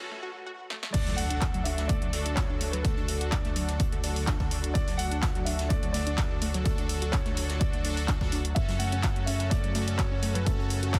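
A lush, detuned pluck opens this bittersweet, dreamy progressive house excerpt at 0.1 seconds, its arpeggios pumping and echoing through a gritty 12-bit sampler haze, before a punchy house kit with bright hats, handclaps and crash enters at 0.7 seconds with a fill. At 0.9 seconds the drop arrives: a punchy, tape-warm kick sits up front over a round, deep analog bass, while a dark, mellow grand piano carries the melody and a smooth, phased supersaw adds stabs. A thick, warbling chorused pad holds chords in the background, a distant brushed kit adds very faint texture, and a very quiet electronic impact enters at 1.1 seconds, just after the drop begins, all within a small room and a dense, heavily limited master.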